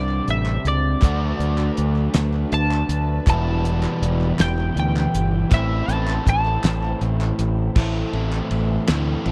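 A cloth-damped, thuddy drum kit with a fat snare sits up front in this cool, moody indie rock excerpt at 54 BPM in 6/8, alongside a growling overdriven fingered bass, a crunchy double-tracked guitar riff, a twangy twelve-string electric guitar melody with analog chorus and tape echo that stops at 7.0 seconds, a very quiet warbling string machine holding viola chords, and hollow group handclaps in the background, all captured in a dry, close 1970s-style studio sound over chords moving from Csus2 through D6 and Em to Am.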